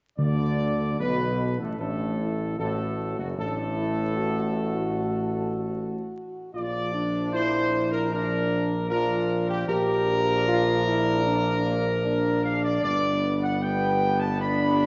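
A dark, up-front trumpet section carries the melody in this majestic, solemn classical brass excerpt at 76 BPM, over clear sustained trombone chords in the background and a mellow, roomy tuba bass, with timpani sounding only from 0.2 to 1.4 s and a warm French horn section joining on sustained chords at 1.8 s, all moving from D through Bb to G inside a moderate scoring-stage reverb with vinyl crackle and a dulled top end.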